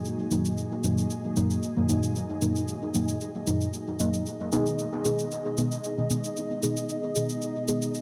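Set to a straight 4/4 pulse at 114 BPM, this hypnotic, cavernous dub techno fragment in G# minor is carried by an electronic, tape-warm shaker that comes in at 0.1 s and ticks through to the end. Up front, a deep, mellow chord stab with a fast attack and decaying tail sits between F#3 and G#4, coloured by chorus, phaser and dub echo while a filter sweep runs across its whole length. Beneath it, a dark analog pad holds sustained chords from A#3 to D#5, its detuned, wave-folded tone swelling in slowly under chorus and its own filter sweep. Far in the background, a flickering, grainy granular texture drifts between G#3 and D#5, mellow and long-releasing in its built-in reverb. The harmony moves from D#m to G#m at 4.3 s, and a huge ambient reverb with a 5.4-second decay gives the short clip its deep, cave-like space.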